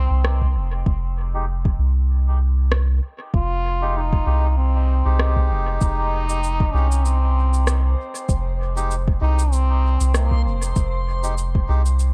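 A soft, up-front electronic kick and a swung 16th-note feel of electronic rim click and shaker set a meditative 97 BPM groove in 4/4, while a round, deep dub sub bass holds down F minor over a single Fm9 chord in this spacious ambient dub fragment cut from a longer piece. A thin, buzzy trombone with a metal mute carries the melody with vibrato, roughened by vintage 12-bit sampler grit and dub echo, as a reedy, nasal melodica adds stabs through a filter sweep and its own echo. From 7.9 seconds a reversed, granular texture drifts in on a high C, dreamy and bathed in its own reverb, all within a digital ambience.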